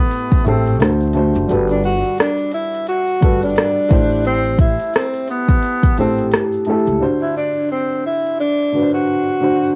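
Hazy with vinyl crackle and cassette-tape softness in a lightly reverberant home-recorded space, this nostalgic, reflective lo-fi hip hop excerpt at 87 BPM with a swung 16th feel sets a breathy, whispered tenor saxophone melody over dark, boxy upright piano chords moving through Am7, D7 and Gmaj9, while a gritty 12-bit electronic kit with a deep kick, smooth hats and rim clicks, a faint grainy egg shaker and a woody, thumpy pizzicato upright bass with tube saturation drop out at 7.0 seconds to leave the sax and piano alone, the sax ending at 9.7 seconds and the piano at 9.8.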